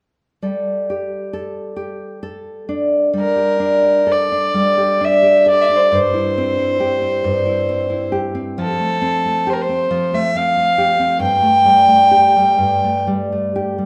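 Rubato and unevenly pulsed in 3/4 at about 67 BPM, this mournful, haunting Celtic slow air, cut from a longer piece, opens with a fingerpicked nylon-string guitar alone from 0.4 seconds, its fresh strings, deep classical body and audible finger squeak resting on Gsus2, before a single bowed fiddle with a nasal, reedy, gut-string tone and smooth top enters up front at 3.2 seconds to carry the melody until 13.0 seconds while the guitar moves through C/G and Fadd9 and back to Gsus2, all set in a moderate recital hall reverb.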